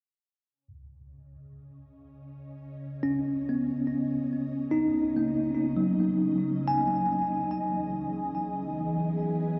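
Floating in free time, this serene yet melancholic ambient fragment in C# dorian opens with an airy, full-bodied pad that fades in from 1.2 seconds, its slow-attack sustained chords shimmering with ensemble chorus and phaser. At 3.0 seconds a bell-like, clean tine electric piano enters up front with delayed arpeggios. Both sit inside a huge, wet reverb as the harmony moves from C#sus2 to Emaj7 at 7.2 seconds.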